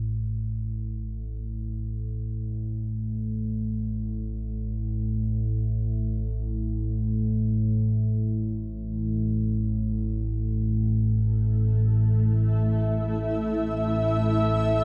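A detuned analog drone of sawtooth and pulse waves, thickened by lush chorus and carried by a filter sweep, sits up front through this fragment of a cavernous, unsettling dark ambient piece tuned to A4 = 436 Hz. At 11.6 s a granular cloud pad enters with sustained chords, its blurred, bright texture washed in its own built-in reverb. The pad joins the drone in a huge ambient space.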